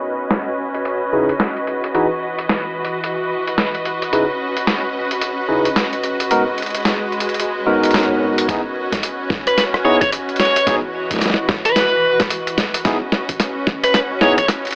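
A dry, gritty hardware sound with vinyl crackle and an AM-radio tint frames this playful glitch hop excerpt at 110 BPM in C# minor, where smooth bowed strings with light vibrato pump under the sidechain alongside barky, filtered electric piano stabs with tape echo and pitched-down boom bap drums with a high-tuned snare, joined by a faint electronic swell at 7.6 seconds, a thumpy background kick from 8.5 seconds and a biting overdriven lead guitar melody from 9.5 seconds as a filter sweep gives way to a build-up and drum fill.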